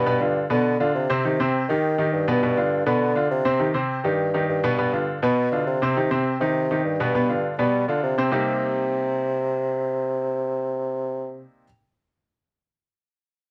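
Sultry and sophisticated, this short jazz excerpt moves at a brisk clip in a straight, even feel, cut from a longer piece. A bright upright piano carries the accompaniment with a brilliant, woody tone and short sustain, sitting up front and polished in the mix. Beneath it, a mellow bassoon takes the bass role, played in a classical style with light vibrato and standing out as a solo voice close to the listener. The harmony rocks back and forth between G7 and Cm before settling on a Cm7 at 8.3 seconds, where the music shifts into a new section. Light reverb lends the pair a touch of space, and both parts drop away just before 12 seconds.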